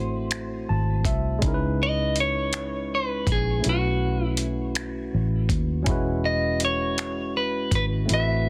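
A dark, picked electric guitar carries the melody from the start over a bright, barky tine electric piano heard through a combo amp and a round, foam-muted vintage bass, and the piano adds a fill from 0.3 to 1.4 seconds as a dusty, sampler-style drum kit enters with finger snaps, hi-hat, a thumpy kick and a gritty, softly clipped snare. This tender slow six-eight R&B piece in E major moves at 54 BPM through Am6, C#m7, B9sus4 and E69. Every part sits up front in a dry, dense, heavily limited modern mix, and the clip is cut from a longer piece.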